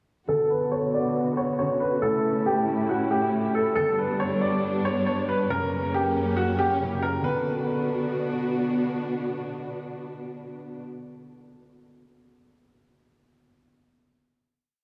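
A half-time drill pulse in 4/4 drives this dark, tense hip hop piece, where a bright, woody upright piano loops a sampled-sounding melody through low-pass filtering and analog delay until 8.5 s, over mellow, thumb-plucked harp chords that ring in an open voicing and a lush, bowed string section holding a sustained pad with vibrato, while a filter sweep runs through the breakdown before the final chord at 7.2 s, the whole dreamy mix soaked in long plate reverb.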